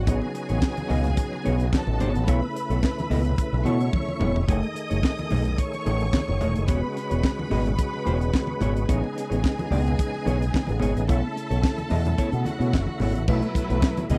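A dry, close recording in a 1970s studio style opens this danceable, driving disco clip, cut from a longer piece and moving in a straight 4/4 groove. A tight funk drum kit sits up front with a high-tuned snare, a tight kick, hi-hat, handclaps, toms and crash cymbal, and it breaks into a fill between 3.9 and 4.5 seconds. Just as prominent, a picked electric bass runs through an envelope filter for a bright, amped tone, joined by faint, low-tuned congas with a vintage, band-limited edge. An overdriven tonewheel organ holds gritty sustained chords with key click and percussion, spun through chorus vibrato and a fast rotary speaker, while a clean, dark semi-hollow guitar fingers its accompaniment. Behind them, a lush, bowed string section plays a smooth second line from a distance, over jazzy extended chords such as Amaj9#11, B9sus4 and F#m69.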